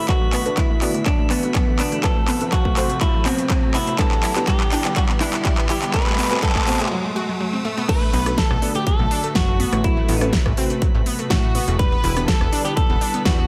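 A punchy, tape-warm electronic kick sits up front in this bittersweet, expansive progressive house cut at 123 BPM in A dorian, joined by a big-room dance kit with a huge snare and crisp hats while a clean, compressed electric guitar carries the melody through digital delay over a very quiet airy, breathy pad and a faint glassy texture of drifting overtones. During the build-up a background riser sounds alongside a drum fill and a filter sweep on a lush, detuned unison pluck playing sidechain-pumped arpeggios with tape echo, while a deep, nasal chord stab with chorus moves through Bm7, Am69 and Em7. A short break gives way to the drop at 7.9 seconds, where a rich chamber violin section enters with vibrato and tape echo, and from 8.1 seconds a funky, plucky analog bass with ring modulation pumps underneath.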